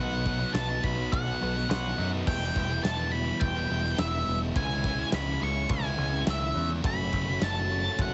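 Heavily compressed and radio-like, with the top end rolled off above 8.0 kHz, this short cut from a longer quiet-loud alternative rock piece sits in a small room reverb and carries a dark, cathartic mood. It moves at 105 BPM in a straight 4/4, in E dorian, tuned to A4 = 438 Hz, with the harmony stepping through B, Em, C#m and F#m. Up front, a dark, fuzzed octave lead guitar carries the melody in a high register while a bright, growling picked electric bass, overdriven and amped, holds down the low end. Behind them, an overdriven semi-hollow guitar with a hollow-body tone and a sludgy, warm overdriven guitar both play picked riffs. A huge arena drum kit enters at 0.3 seconds, acoustic and smooth in a big room, its punchy kick, medium-tuned snare, crash and ride sitting in the background.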